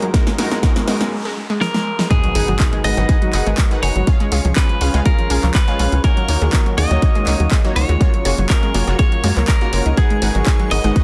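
A punchy, layered electronic kick sits up front in this emotional, bittersweet progressive house excerpt at 122 BPM in G# dorian, driving a short build-up into a drop at 2.1 seconds, where the chords move from G#m7 through C# and D#m7 to F#maj7. A tight, nasal sequencer bass with a sawtooth edge and sidechain pumping shares the foreground, while a big-room kit bathed in studio reverb adds handclaps, hi-hat and a huge snare. During the opening build, drum fills, a filter sweep on the synth pluck, a background noise sweep and a brief break lead to an impact at the drop. A round, detuned analog pluck plays arpeggios through chorus and digital delay, and a lush, bright unison pluck with ring modulation adds stabs, both pumping against the kick. A clean, twangy electric guitar carries the melody from 1.6 seconds with delay, over a thick, airy pad of sustained chords, and a very quiet, dreamy, granular backwards swelling texture joins at 4.4 seconds. 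The sound is dense and heavily limited, with light digital ambience.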